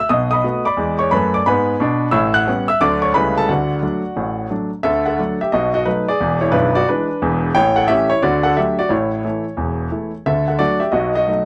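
A clear, intimate grand piano plays solo stride jazz with a swinging, playful lilt, ranging from deep bass to bright treble over a turnaround of B7, E7 and A chords resolving to D; it sits up front in a dry, close 1970s-style studio sound with light reverb, long sustain and audible action noise, in a short fragment cut from a longer piece.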